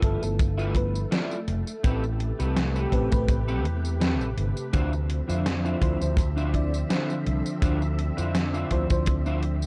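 This short vaporwave excerpt drifts at an unhurried pace with a lightly swung sixteenth-note feel, anchored by a dry, tight kick drum sitting up front and a gated 80s digital drum machine supplying hi-hat, tambourine and a snare bathed in gated reverb. Underneath, a fretless electric bass sounds bright and growly, pushed forward in the mix. A clean, picked electric guitar plays a riff through analog chorus and tape echo, while an FM electric piano with a soft pad layer adds lush, dreamy accompaniment coloured by phaser, subtle chorus and tape echo until it stops at 9.1 seconds. A silky vintage string machine enters at 0.2 seconds with slow-attack sustained chords and ensemble chorus. The harmony moves from G13 to Am9 to Dm9, and the dark production with light digital ambience gives the whole a melancholic, woozy haze.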